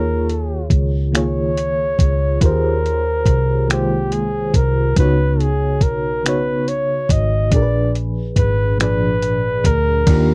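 A mellow, up-front flugelhorn with light vibrato and slapback echo carries a tender melody over a warbling FM electric piano with tremolo and phaser, a dark, round, foam-muted electric bass and a gritty, compressed sampler-style soul kit with thumpy kick, finger snaps, hi-hat and crash that enters at 0.3 seconds, in this dry, close 1970s-style slow six-eight R&B excerpt at 47 BPM moving from Eb9sus4 through Db9sus4 to Bb7b9.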